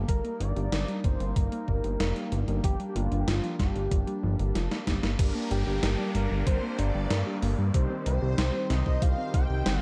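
A fat, thick analog bass sits up front in this nocturnal, cinematic synthwave excerpt, its detuned sawtooth tone shaped by a filter sweep and breathing with sidechain pumping beneath a thumpy, tape-softened electronic kick. A gated 80s digital drum machine supplies crash cymbal, hi-hat and a gated-reverb snare, while a smooth, warbling analog pad holds sustained chords in the background, also pumping and thickened with chorus. A gentle, round pluck spins arpeggios through chorus and digital delay, and a bold unison lead carries the melody with vibrato, a sub octave and a coat of vintage 12-bit sampler grit. An electronic swell and downlifter enters at 4.2 seconds, a drum fill leads into the second section, and at 5.2 seconds mellow, evolving synth brass stabs arrive, joined at 5.5 seconds by a shimmering string machine violin line coloured by ensemble chorus, cassette tape and delay. The production is dark with light reverb, and the chords move from Eb/G and Bb6/G to Gm and Cm.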